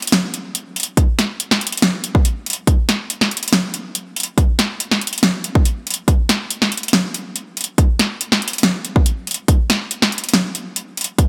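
The recording sits in a light reverb, with the drums placed up front and carrying a small-room character. This future bass cut from a longer piece runs at 141 BPM in 4/4 with a half-time feel and a gentle swing on the sixteenths, giving it a lush yet playful mood. A pop drum kit opens at 0.0 seconds with metallic hi-hats and a fat snare, layered and overdriven for a produced, electronic edge. At 1.0 seconds an electronic kick drum joins, punchy and gritty with its own overdrive, and it sits a touch louder than the kit. The two drum parts carry the passage together through to its close at 11.3 seconds.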